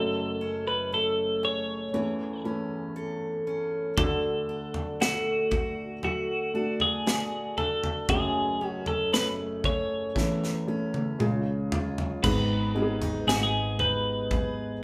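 In a straight, unhurried 4/4, this melancholic pop ballad excerpt opens with a bright, twangy twelve-string electric guitar carrying the melody up front, over a soft felt-muted upright piano with audible action noise and a picked dreadnought acoustic guitar playing arpeggios. A polished acoustic drum kit with a punchy kick and medium-tuned snare joins at 4.0 s and plays a fill from 10.2 s. A dark, round hollow-body electric bass arrives at 12.2 s as the piece moves into a new section, all of it set in a lush studio reverb with the feel of a band playing live in one room.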